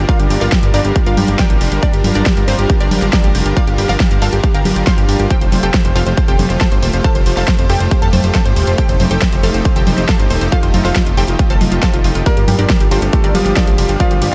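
Bittersweet and euphoric, this uplifting trance excerpt sets a detuned unison pluck melody with delay and a catchy plucky unison lead with tape echo, both pumping, over a lush, airy supersaw pad and a fat sawtooth analog bass, driven by a punchy, overdriven electronic kick up front and a big-room kit of congas, hi-hat, ride cymbal and huge snare, before a brilliant concert grand piano enters at 12.3 s with its own tape echo, the whole mix sitting in a light reverb.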